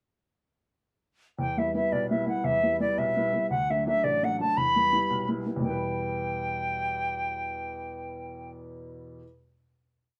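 Celtic folk jig in E minor at 113 BPM in 6/8, dark yet lively and spirited, in which a bright, pure wooden flute with vibrato and a soft attack carries a motif-based melody in period phrases up front from 1.4 s to 8.5 s, over an upright piano whose woody, smooth, vintage tone and long sustain supply oompah bass notes and chord figures, all heard as a band playing live in one room with a wet studio ambience, the whole piece settling on a final chord from 5.6 s.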